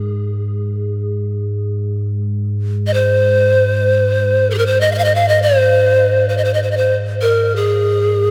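A deep, rumbling drone on Ab2 opens this brief, free-time meditation piece, sounding together with a bronze singing bowl that rings faintly in the background with a slow beating shimmer until 3.4 s. The drone sits up front, dark and ominous with a warbling, vintage character, its detuned tone swelling in on a slow attack and sustaining through the full 8.3 seconds under its own built-in reverb. At 2.9 s a breathy bamboo pan flute takes the melody, moving within an Ab major pentatonic range from Ab4 to F5, close-miked and up front with a soft, chiffy attack and gentle vibrato. Cut from a longer work and tuned to A4 = 435 Hz, the music feels spacious and calm. A huge, wet ambient reverb with a 7.3-second decay surrounds the sound, lending it a vast, floating sense of space.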